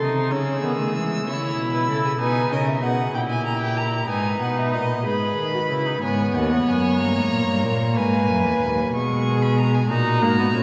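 Up front in the mix, a solo cello carries the bass line with vibrato, soft attacks and expressive portamento, grounding this serious, solemn baroque-style fugue for string quartet. Above it, the first violin sings the melody between D#5 and E6 with a smooth, even tone and vibrato. A second violin holds a lower line, and a viola supplies accompaniment with gentle attacks and gliding portamento; both sound distant. The piece moves at 62 BPM in a straight 6/8, with harmony that passes through C#m, Edim/Bb and Gdim and settles into G# minor from 6.0 s before closing on D#m. A long, wet church reverb and a dark, warm production give the quartet a cavernous glow, and this short extract is cut from a longer work.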